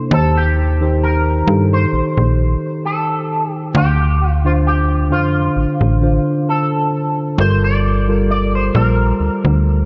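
An unhurried, lightly swung 4/4 groove carries this late-night, moody contemporary R&B fragment, where a snappy, metallic FM bass and a mellow tine electric piano heard through its built-in speakers sit up front, while a twangy, picked electric guitar with an envelope filter, analog chorus and delay carries the melody over Eb6, Dm7 and Gm9 chords, the dreamy mix soaked in church reverb and marked by lossy compression artefacts.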